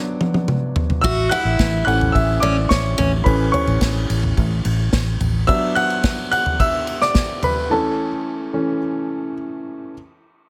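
A small room frames this short, hopeful piano-driven pop excerpt at 108 BPM in a straight 4/4, moving between B minor and A major. A concert grand carries the whole passage, taking the solo from start to finish; it sounds intimate and up front, with deep bass and the faint click of its action audible beneath the notes. An unplugged drum kit played with bundle sticks opens with a fill and stays until 7.6 seconds, its dark cymbals, medium-tuned snare, toms and punchy kick sitting in an airy, polished space. At 1.0 second a foam-muted, round electric bass enters on a low A, and a full-bodied picked dreadnought steel-string guitar adds a brief riff with a touch of finger squeak. The guitar drops out by 3.1 seconds and the bass soon after, leaving the piano and drums to carry the warm glow forward.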